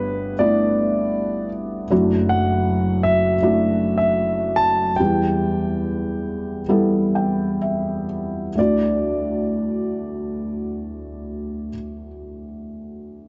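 Tender and heartfelt, this slow pop excerpt in D major at 61-80 BPM sets a clear, polished concert grand piano melody with tape echo and long sustain over a soft, mellow felt-muted upright piano accompaniment, both up front with audible action noise, moving through Gadd9, Dadd9/F# and Em chords as the tempo eases from 1.9 seconds, the upright adds a fill at 6.7 seconds, and the grand's melody stops at 11.7 seconds, all in a dark, warm production with light reverb.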